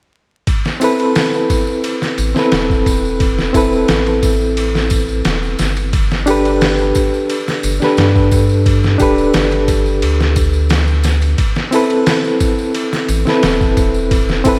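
Brooding and melancholic, this trip hop piece opens at 0.5 s with a compressed, pitched-down sampler-style drum kit of thumpy kick, snare, hi-hat and ride, backed by tambourine and triangle tucked in the background; a reedy, lightly overdriven electric piano with fast tremolo and tape echo sits up front from 0.8 s, and a round, dark analog bass joins at 2.2 s, as Amadd9 and Gadd9 chords unfold in a dreamy, hall-reverb-soaked mix laced with vinyl crackle.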